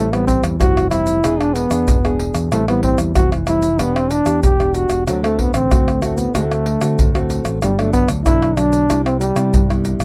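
A straight 4/4 groove at 94 BPM sets this short, playful and festive samba-choro cut in motion, carried by a close, dry percussion section of tube shaker, pandeiro, tamborim and a deep surdo struck with hard hands and sitting up front from 0.1 seconds. Out in front, a solo trombone plays the melody in a jazz style, close-miked and warm, with scooped notes ranging from F#3 to G4, stopping at 9.8 seconds. Beneath it, a thumb-plucked nylon-string guitar in classical style supplies the accompaniment, its finger squeaks audible as it moves through Am7, E7, Em7, D7, Gmaj7 and Cmaj7. An overdriven, fingered electric bass, round and amped, anchors the low end down to E1. Light reverb gives the whole thing the dry, intimate character of a 1970s studio session, and the piece is cut from something longer.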